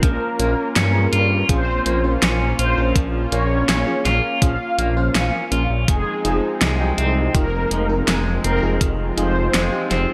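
An overdriven, thumpy electronic kick drum sits up front in this moody, nostalgic synthwave excerpt at 82 BPM in 4/4 until it stops at 9.0 s, alongside a rumbling, detuned saw bass, while a pop kit's fat snare and hi-hat ring with gated reverb, a brassy, vibrato-laced synth brass carries the melody with chorus and delay, a clean, bright electric guitar plays arpeggios through tremolo and delay, and a smooth analog pad with sidechain pumping and a round, warbling FM electric piano playing stabs sit in the background over a light reverb as the harmony moves from Bbm to Fm7 at 5.9 s.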